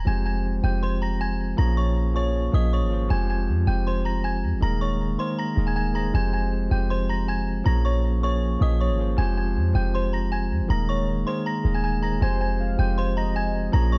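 A menacing, eerie hip hop cut from a longer piece, moving with a half-time feel over a dark production with little reverb. A deep, boomy 808-style bass, a sine tone with a noise layer, sits up front from the start. A bell-like, clean electric piano enters at 0.1 seconds and holds the accompaniment through a looping cycle of Fmadd9, Bbm7 and Ebsus4 chords, softened by a low-pass filter. Above it a delicate, tinkling FM tine bell carries the melody high in its register, shaded with chorus, delay and its own low-pass filter. At 12.2 seconds a velvety sawtooth lead with vibrato slips in as a second line in the background, touched with chorus and delay, before stopping at 13.7 seconds.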